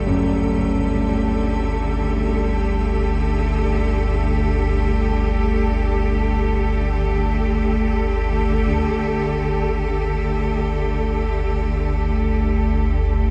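Dark and desolate, this dark ambient drone fragment unfolds in a vast, echoing cathedral-like space. An ominous, rumbling synth drone sits up front in the low register, thickened by its own reverb and a lush chorus. Beside it, a bright, intense cello section bows sustained chords with vibrato. In the background, a warm concert grand piano plays deep-bass arpeggios trailed by tape echo, while an icy, crystalline glass pad with chorus and reverb adds an airy shimmer. Both the piano and the pad fall away at 8.7 s, when a very quiet taiko ensemble struck with heavy sticks sounds briefly until 8.9 s, leaving the drone and cellos to carry the piece on to 13.3 s.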